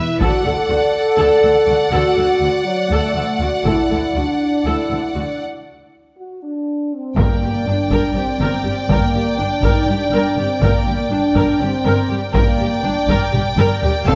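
Lush bowed strings open this relentless, heroic cinematic orchestral cue in 7/8, with violins carrying a vibrato-rich melody over a second violin line, violas, and background cellos and woody double basses, while a mellow, loose French horn section holds sustained chords up front; a compressed, saturated taiko ensemble drives from 0.2 s through a break at 5.4 s to a drum fill near the close, and a brief, dry, very quiet timpani stroke from hard mallets marks the new section at 7.2 s, the whole set in a moderate scoring-stage reverb.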